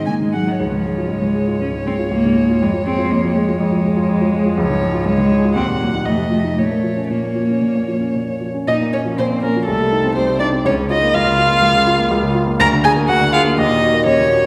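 Urgent and dramatic, this quick classical-period piano trio passage unfolds with a rubato feel: a dark, expressive violin sings the melody up front with vibrato and portamento, a warm grand piano with short sustain provides accompaniment, and a focused cello adds a bowed second line with vibrato from 0.1 s, all within the wet reverb of a concert hall.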